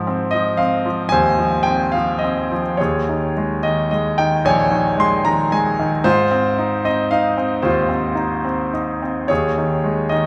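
A brilliant grand piano opens this short classical fragment on its own, sitting close and up front with the mechanical noise of its action audible beneath the notes. The mood is relaxed and hopeful, set in Ab major and 3/4 at around 110 BPM, though the beats stretch and give with a free, rubato feel. Its harmony moves between Ab6 and Eb7sus4, returning to the Eb7sus4 color at 9.3 seconds, and the part spans from Bb1 in the bass up to C6. Each note carries a long sustain that blooms into the generous reverb of a church or concert hall, lending an intimate instrument a spacious halo. The piano plays alone until it stops at 10.3 seconds, a moment lifted from a longer piece.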